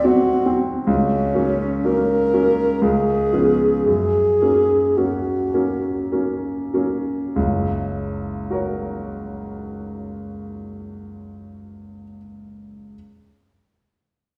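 Tender and serene, this rubato romantic classical fragment in 3/4 sets a dark, vibrato-laden alto saxophone melody up front over a clear, smooth grand piano with a vintage, short-sustained touch, slowing through its opening before the saxophone falls silent at 6.1 s and the piano carries on alone to 13.0 s, all bathed in the wet reverb of a recital hall.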